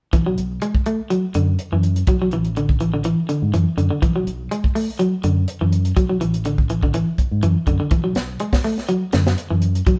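A straight 4/4 groove anchors this funky, intense afrobeat excerpt, with a dry, tight funk kit (high-tuned snare, tight kick and hi-hat) sitting up front alongside a round, punchy fingered bass. Over a single Bm7 chord, a twangy electric guitar at the edge of break-up plays arpeggios, also placed close and forward. The band sounds like it is playing live together in a stone room with a moderate reverb.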